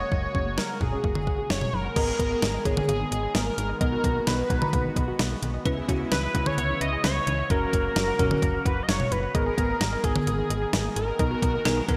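A bright, 1980s-style digital production sits in a lush hall reverb, giving this cool, melancholic synth-pop fragment from a longer piece its glossy depth. Up front, a thick, warbling unison sawtooth lead carries the melody with vibrato, shimmer reverb and delay, while a brassy, nasal analog pad holds sustained chords in the background through chorus and shimmer reverb. A very quiet, detuned unison pluck traces arpeggios, and a slap-like FM bass adds a snappy, metallic attack that decays into a mellow tail. A clean 12-bit drum machine enters at 0.1 seconds with a thumpy kick, fat snare, hi-hat, toms and crash cymbal, all wrapped in gated reverb. At 2.0 seconds a bell-like tine electric piano joins with analog chorus and shimmer reverb, as the harmony moves through chords such as G#madd9, Bmaj7 and C#m7.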